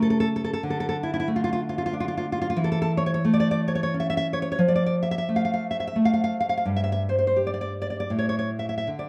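A nylon-string guitar carries this short romantic excerpt on its own, fingerpicked in a classical style and placed up front, with fresh strings and a warm acoustic tone. The mood is melancholic yet passionate, unfolding in 3/4 with a rubato feel that lets the tempo drift between 74 and 93 BPM. The harmony moves from A/C# through D5 and A/E to an Fmaj7, before the chords fall away at 6.7 seconds, and the guitar ranges from G2 up to F5. A moderate recital hall reverb surrounds the instrument, and the overall production is dark and warm, with the tuning set slightly high at A4 = 443 Hz. Lasting about 9.1 seconds, the passage is cut from a longer piece.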